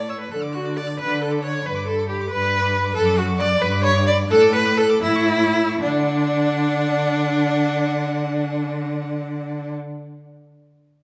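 A clear, close viola, a rich, distant second violin and an expressive cello bass with vibrato and portamento open this lively, spirited classical-period string quartet movement together in D major, 6/8 at 72-93 BPM with a rubato feel, while from 0.1 s a warm, smooth first violin carries the high melody, the pace slowing between 2.3 and 5.8 s before a new section begins, the whole passage cut from a longer piece and bathed in a wet recital hall reverb.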